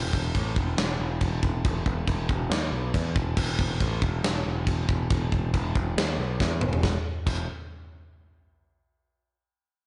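Heavy metal with an epic, dark mood, this short cut pairs a growly, punchy overdriven picked electric bass, bright and up front in its low register, with a big rock drum kit of china and crash cymbals, tight kick, medium-tuned snare and toms set in a big room with a rolled-off top, all under light reverb, before a drum fill at 6.4 seconds leads into a new section at 6.8 seconds.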